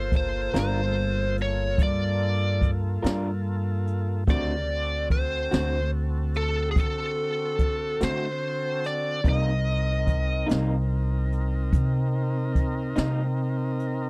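A dry, close studio sound with a 1970s character frames this brooding, smoky slow blues in a straight 12/8, heard as a short cut from a longer piece. A biting, dark lead guitar with overdrive carries the melody up front until 10.5 s, while a second electric guitar, fingered through a small old amp, adds slightly broken-up, lo-fi accompaniment colored by harmonic tremolo. Beneath them a tonewheel organ holds full, thick chords, lightly overdriven and turning through a slow rotary speaker. The pizzicato upright bass sits forward with a woody, growly tone, and a jazz kit played with brushes supplies hi-hat, a boomy kick and a high-tuned snare in a natural room sound. The harmony moves from Gm7 to D7 at 4.3 s and on to Cm7 at 9.2 s.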